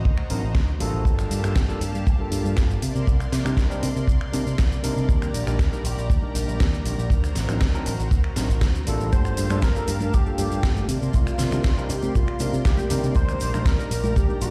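A punchy, up-front picked electric bass with an envelope filter drives this groovy, sleek nu-disco excerpt in G minor at 119 BPM, set over a dry, tight acoustic kick and an overdriven, layered electronic pop kit of finger snaps, hi-hat, shaker and deep snare, while a barky, gritty tine electric piano with analog delay and a lush, nasal sawtooth pad pumping with sidechain and chorus carry the D7b9b13, Gm9, Cm9 and Ebmaj7 changes, before a bold, wave-folded unison lead with vibrato and close, hard-hand congas and cabasa arrive at 9.1 s, the mix sounding as if played on a big sound system in a bare stone room.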